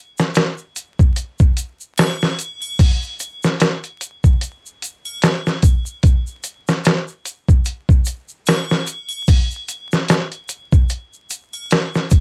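A home cassette recording with vinyl crackle and light reverb frames this hypnotic, dark trip hop fragment, cut from a longer piece and swung on the sixteenths. A gritty, compressed, sampler-style soul drum kit sits up front from 0.2 seconds, its thumpy kick, fat snare and hi-hat carrying a cassette-tape grain. Far lower in the mix, close and dry acoustic egg shaker, triangle and group handclap run alongside it until 12.2 seconds.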